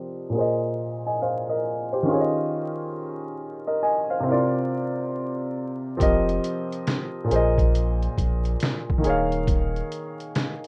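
A 64% swing on the 16ths at 69 BPM in 4/4 sets the lazy pulse of this nostalgic, hazy lo-fi hip hop piece, where a woody, up-front upright piano under a low-pass filter sweep plays Bb9sus4, Eb9sus4, C9sus4 and F9sus4 chords on its own until a gritty, compressed, pitched-down sampler-style trip hop kit with a thumpy kick and medium-tuned snare arrives at 6.0 seconds beside a deep, thick, saturated sub bass that drops out at 9.8 seconds, the scene softened by light reverb, vinyl crackle and a rough home-demo mix.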